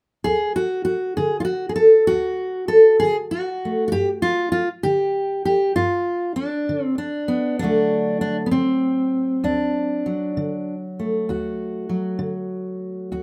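A fingerpicked steel-string acoustic guitar enters at 0.2 seconds and carries this gritty, soulful piece of acoustic country blues alone, its dreadnought body sounding woody and up front with the warm tone of old strings. The slow 12/8 pulse sits at 65 BPM in D mixolydian, moving from D to G5 at 3.9 seconds and back to D at 7.6 seconds. A moderate small-room reverb surrounds the guitar until this excerpt ends at 13.2 seconds.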